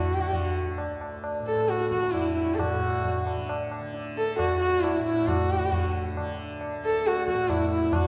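Hindustani classical music in a meditative, radiant mood, cut from a longer piece in triple time that gradually speeds up. A dark, woody sarangi carries the melody up front, its bowed line gliding with portamento and light vibrato over sympathetic strings, while a bright, buzzing tanpura drone shimmers softly beneath and a high-tuned tabla with a short ring enters at 0.3 seconds, close and dry. The recital hall lends a wet reverb to the performance, and the recording shows some lossy compression artefacts.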